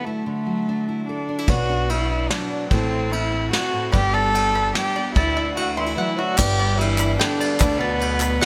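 An up-front bowed cello carries the melody with a nasal, intimate tone and light vibrato through this uplifting indie folk excerpt in G major at 147 BPM in 3/4, over a bright fingerpicked steel-string guitar that plays until 6.4 s. From 1.5 s a shimmering twelve-string guitar, woody pizzicato upright bass and a distant brushed drum kit with dark cymbals build the arrangement, joined at 3.9 s by twangy banjo arpeggios in the background and then by a mellow French horn second line with digital delay. At 6.4 s a brilliant upright piano, grainy egg shaker and crisp group handclaps enter very quietly, and the mix sits in a lush hall reverb with a bright 1980s-style digital production.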